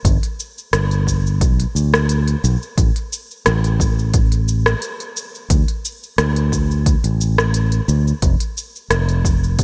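A fingered electric bass anchors this short slice of sunset chillout, sitting up front with a warm, punchy tone that blends a direct signal with an amp and stays low in its register. Alongside it, an electronic kick drum carries a layered, produced thump, re-recorded in a small room for a tight sense of space. A deep house drum kit joins almost at once, adding smooth hi-hats, a rim click and a shaker, placed up front and given the same small-room character. The groove sits in 4/4 with a gentle swing on the sixteenths, giving the relaxed, warm mood an easy lilt. Light reverb and a bright 1980s-style digital sheen shape the overall sound across the full 9.6 seconds of this fragment, cut from a longer piece.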